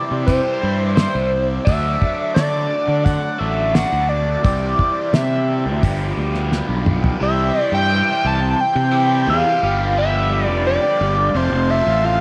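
A screaming, gritty synth lead carries the melody with distortion, chorus, phaser and slapback echo over a buzzy vintage combo organ holding sustained chords in the background and a double-tracked overdriven electric guitar riff with phaser, as a round, fuzz-soaked fingered bass enters at 0.1 s and a dry, cloth-damped drum kit with a fat snare and tight kick thuds up front until a fill closes its part at 7.2 s, all giving this trippy, hazy psychedelic rock excerpt in G major a straight 87 BPM pulse in a small, lightly reverberant room.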